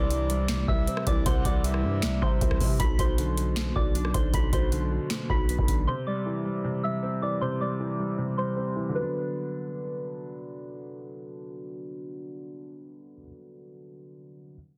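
A booming analog drum machine sits up front with a deep kick, crisp snare, metallic hats, finger snaps and rim clicks, re-recorded in a large room and driving this eerie, brooding half-time trap piece at 156 BPM in B phrygian alongside a growling, buzzy 808-style bass, both stopping at 5.9 seconds. A soft, pure FM synth bell carries the melody through chorus and a low-pass filter, while a breathy, flute-like synth lead with vibrato adds a brief second line before dropping out at 2.8 seconds, when a filter sweep begins. A muted, intimate felt-damped upright piano with audible action noise holds the accompaniment between Cadd9 and Bm chords until 14.6 seconds, all set in digital ambience with a dense, heavily limited modern master.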